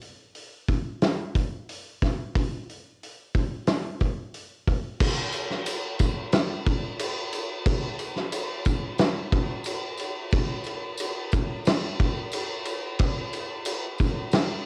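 A dry home cassette recording carries this blissful, dreamy fragment of straight 4/4 rock, where a loose, roomy indie drum kit with tape coloring, a punchy kick, a medium-tuned snare, hi-hat, crash cymbal and a rolled-off top sits up front from the start, joined at 5.0 s by a jingly, close-miked tambourine tucked in the background.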